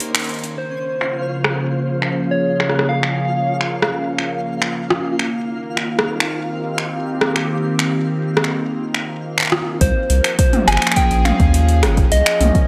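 A lightly reverberant, cerebral and melancholic IDM excerpt at 104 BPM in straight 4/4, built on a swirling, detuned sawtooth pad with phaser, chorus and shimmer reverb that sustains chords such as Bbm9 and Cm7 under a filter sweep from 0.6 to 9.8 seconds. An overdriven analog drum machine with metallic hats, finger snaps, rim clicks and toms sits up front, while a soft, keys-like FM lead with warbling vibrato and delay plays the melody and a twinkling granular texture sparkles in the background until 9.8 seconds. At 9.8 seconds a round sine sub bass and a deep electronic kick enter as the harmony returns to Bbm9.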